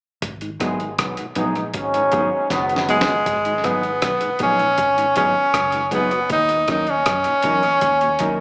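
A steady, straight four-beat roots reggae groove opens this meditative, laid-back excerpt, carried by a gritty, compressed sampler-style drum kit with a thumpy kick, medium-tuned snare, rim click and hi-hat, overdriven and thickened with tape echo. Beneath it, a foam-muted fingered electric bass sits dark and round, while a mellow tonewheel organ with audible key click and a slow rotary speaker hangs in the background alongside a clean, fingered electric guitar soaked in spring reverb and dub echo. A punchy trombone section with light vibrato stands up front at the start, then drops out at 3.0 seconds as a drum fill leads into the second section. From 2.9 seconds a clear tenor saxophone takes the melody as the lead, singing with its own gentle vibrato, dub echo and slapback, and the harmony shifts from G#m7 to D#m7 at 6.3 seconds. The whole performance comes across as a live gig heard through the venue's PA, with club reverb, a moderate plate tail and a small-speaker character.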